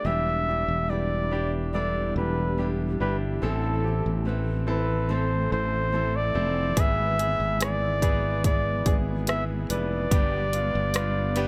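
A heartbroken, longing pop ballad fragment at 72 BPM in a straight 4/4 opens with a warm flugelhorn carrying the melody between A4 and E5, its soft attack, vibrato and scooped notes giving it a jazz-style solo voice up front. Beneath it, a clear grand piano plays intimate accompaniment with audible action noise, a very quiet fingerpicked nylon-string guitar adds classical arpeggios, and a sustaining fretless electric bass sits forward with a bright, growly, punchy tone down between E1 and A1. At 2.0 seconds a very quiet granular cloud pad drifts in with blurred, detuned, evolving sustained chords carrying their own built-in reverb. An electronic house drum kit arrives at 6.8 seconds, its layered kick, hi-hat and rim click placed close and prominent. The harmony moves through Em7, Am, E/G# and G, tuned to A4 = 437 Hz, and the overall mix stays dry and direct.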